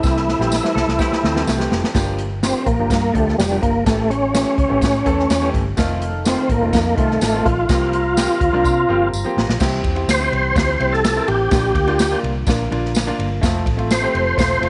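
Uptempo 1960s-style soul at 126 BPM in a straight 4/4, this danceable, warm cut features a gritty, overdriven tonewheel organ up front carrying the melody through chorus vibrato and a fast rotary speaker, backed by an intimate grand piano with audible action noise and a round, foam-muted electric bass. A punchy, polished big-band drum kit with crash, ride, hi-hat, kick and snare opens with a fill, alongside a jingly tambourine, while a clean, picked electric guitar riff sounds briefly from 0.8 to 1.9 seconds in the background. A dark, mellow second organ holds sustained chords through a slow rotary speaker, dropping out at 1.9 seconds and returning at 5.8 seconds, all set in a light small-room reverb.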